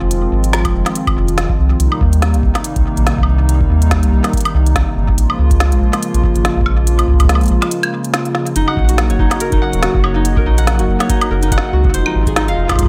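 IDM at 142 BPM in Gb lydian with a lightly swung sixteenth feel, this wistful, glitchy excerpt sets a hollow, flute-like pad with chorus over a round, up-front analog bass with tube saturation, while an electronic kit of crisp hats, woody snare and woodblock, soaked in tape echo, is joined from 0.7 s by a deep analog kick, both overdriven, and after a short break at 7.7 s a ringing, fingerpicked concert harp with 12-bit sampler grit and dub echo enters at 8.6 s, all within an echo-heavy mix as the chords move from Fm7 through Cm7 and Bbm7 to Gb6.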